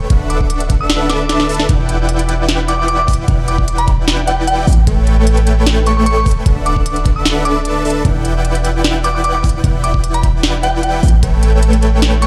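Played dry through a big sound system in a bare room, this bittersweet, dreamy future bass fragment moves in a half-time feel, with a huge, thick, detuned supersaw riff and a deep, boomy 808-style bass both pumping up front against a knocking, tape-warm electronic kick and a trap kit of sharp snare and crisp hats that slips in a brief fill at 1.1 seconds, while a glassy, crystalline FM synth bell warbles on top through chorus, tremolo and delay over a D6, Em7 and A7 progression.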